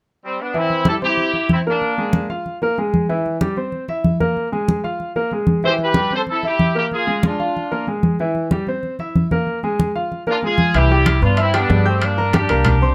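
Close, detailed microphones and light reverb give this festive, danceable salsa excerpt at 188 BPM an up-front sound. A bright, punchy vintage horn section carries the melody in short phrases from 0.2 seconds, over a clear, polished concert grand piano with deep bass and soft-handed, thin-skinned congas, as the chords move between C and Bb7. At 10.7 seconds a woody, thumpy pizzicato upright bass and ringing metal-shell timbales join, while the harmony opens onto Cmaj9 and Gm before the clip ends.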